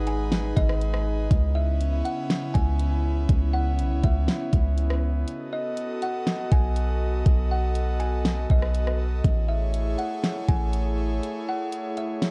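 Ethereal and melancholic, this short excerpt of atmospheric cloud-rap moves at 121 BPM in a half-time 4/4 feel, set in C# minor with a tuning slightly above standard pitch. A woody, ringing kalimba carries the melody through a low-pass filter and tape echo, while an airy, breathy pad holds sustained chords beneath it, softened by chorus and pulsing with sidechain pumping. Up front, a deep, boomy 808-style bass with a fast attack and mellow decay anchors the low end until 11.2 seconds. A smooth, electronic drum kit enters at 0.1 seconds with a knocking kick, fat snare, warm hats and rim clicks, sounding re-recorded in a small room. The harmony drifts from G#m to C#m7, then B7 and Amaj7, with brief breaks, and the whole piece sits dry under a worn, warbling cassette-tape character with drifting pitch.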